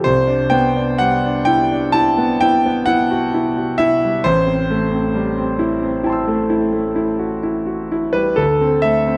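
A clear concert grand piano sits up front in a moderate concert hall reverb, its notes carrying a long sustain and a deep bass. This is impressionist classical solo piano in C lydian, luminous and dreamy, moving at a slow 43 beats per minute in dotted quarters within a 9/8 metre and played with a free rubato feel. The piano carries the whole piece alone, reaching from A1 up to E6, tuned to A4 = 439 Hz. The harmony drifts from Cmaj9 to Am7 at 4.2 seconds, then settles on D7sus2 at 8.4 seconds. Cut from a longer work, this short passage of about 9 seconds has a natural tone that lets each chord hang in the hall.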